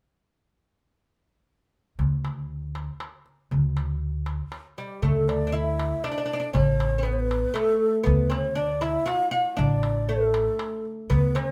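A festive, passionate Arabic maqam ensemble moves in a straight 3/4 at 118 BPM in D maqam rast, with a thumpy, gut-strung upright bass and a crisp, metal-shelled darbuka starting together at 2.0 seconds. At 4.8 seconds the woody, fretless oud, plectrum-plucked on double strings and placed up front, takes the melody, while a breathy low ney with soft attack and vibrato adds a second line above it. The band plays live in one large studio with moderate reverb, in a passage cut from a longer piece.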